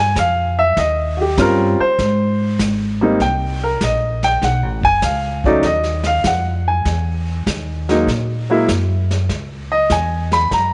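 A warm, up-front baby grand piano solos through this playful, sophisticated swinging jazz trio fragment, backed by woody pizzicato upright bass and a vintage brush kit with a pumping small-room sound and a rolled-off top that enters at 0.2 seconds, all set in light reverb.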